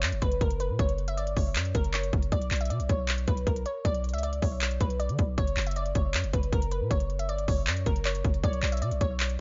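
A dry, dark-toned mix with its top end rolled off frames this menacing, hard-hitting trap cut from a longer piece, moving at 157 BPM with a half-time feel in B harmonic minor over F#5 and Bm chords. An up-front trap kit with a hard-clipped kick, crisp hi-hats and handclaps drives alongside a punchy, heavy sine 808 bass, while a glassy, crystalline wavetable pluck with a filter sweep carries the melody through chorus and digital delay. At 8.4 s a velvety sawtooth-and-triangle synth lead with vibrato briefly sustains a single note in the background until 8.8 s.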